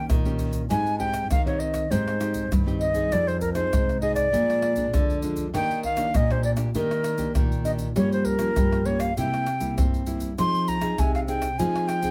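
An airy wooden flute and a fingerpicked nylon-string guitar open this bittersweet yet lively samba and choro passage, cut from a longer piece. The flute's tongued, vibrato-touched melody sits close and up front, while two dark classical nylon-string guitars support it: the full-bodied one accompanies and the other carries the bass. Egg shaker, pandeiro, tamborim and a deep surdo sound dry and near in a moderate small-room reverb.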